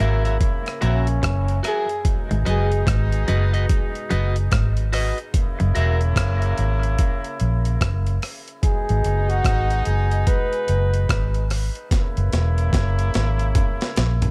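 Swung sixteenths carry this meditative, spacious dub reggae excerpt, where a gritty, pitched-up sampler-style drum kit with a thumpy kick and a round, foam-muted bass sit up front beneath a distant horn section and a slightly broken-up, twangy electric guitar, both trailing dub echo, while a clean semi-hollow guitar plays a brief riff with tremolo and a mellow flugelhorn with scooped notes and dub echo surfaces at 0.8 and 8.6 seconds, within a dark production that closes on a drum fill from 11.9 seconds.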